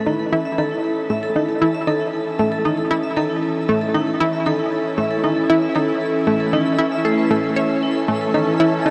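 Expansive and luminous, this ambient excerpt pairs an up-front, round analog pluck riff with chorus and analog delay against ringing hard-mallet vibraphone arpeggios through analog delay, while a swirling, detuned phased pad holds sustained chords and a faint twinkling granular texture, entering at 0.7 seconds, both fade in beneath, set inside a vast shimmer reverb with an 8.2-second tail.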